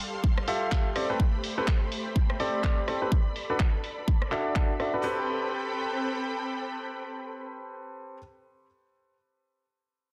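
A silky, nasal analog string pad opens this energetic, bittersweet piano house excerpt, holding sawtooth chords with a soft attack, ensemble chorus, vibrato and a sidechain pump. A house drum kit of handclaps, hi-hat and rim click arrives with it, its layered, tape-toned sound muffled by low-pass filtering and a touch of soft clipping on the snare, while an up-front, punchy electronic kick joins at 0.2 seconds. At 0.5 seconds a brilliant concert grand piano with deep bass and long sustain enters with a polished riff, softened by a low-pass filter, pumped by the sidechain and trailed by digital delay. The harmony drifts from G9sus4 into Am9 and Bm7 before landing back on Am9, and the swung groove carries a gentle lilt. The kick drops out near 4.7 seconds and the drums follow near 4.9 seconds, leaving the piano and pad alone in light digital ambience under a dense, heavily limited modern master.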